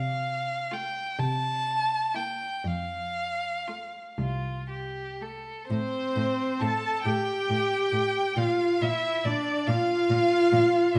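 Classical slow romantic movement for string quartet in a tender 6/8 with rubato, where a focused, up-front first violin sings the melody over a close, smooth cello bass, joined at 0.7 s by a more distant, expressive second violin with portamento and an even viola accompaniment, all four bowed with vibrato and rich in tone within a moderate recital-hall reverb, in a short fragment of a longer piece.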